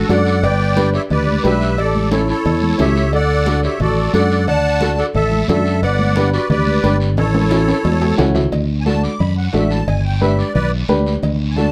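A reedy, shimmering musette accordion carries the melody with plate reverb over a round, punchy electric bass up front and a mellow clarinet with vibrato on a second line until 8.2 seconds, while a clear, woody upright piano with audible action noise, thick-skinned congas, ringing cowbell and timbales and a raspy guiro join in this sunny, joyful cumbia at 178 BPM in D major, arriving at a drum fill and piano fill before the accordion takes a solo from 8.5 seconds in this dark, warm-sounding excerpt.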